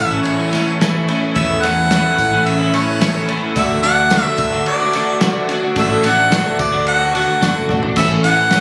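Jangly and open-road in feel, this short folk rock and heartland rock excerpt puts a smooth, up-front harmonica melody with light vibrato and scooped notes over a shimmering picked twelve-string acoustic guitar with lush chorus, a bright, clean twelve-string electric guitar riff, a round fingered bass, a faint reedy accordion holding chords, a cloth-damped thuddy drum kit entering at 0.3 seconds with a fill at 7.4 seconds, and a jingly tambourine in the background, all caught in a small, lightly reverberant room.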